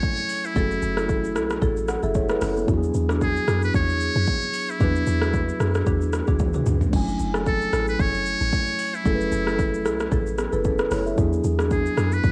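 Hypnotic and deep, this amapiano excerpt in F# minor moves at 113 BPM with a swung 16th feel, as a buzzy, brilliant metal-muted trumpet carries the vibrato-laced melody through analog delay over a mellow tine electric piano with subtle chorus and tape grit, an up-front overdriven deep house kit with a deep kick, metallic hats and a drum fill at 6.4 seconds, background marimba stabs entering at 0.6 seconds, and a round, dark log drum bass, all cycling between F#m9 and E9 in a homespun cassette recording.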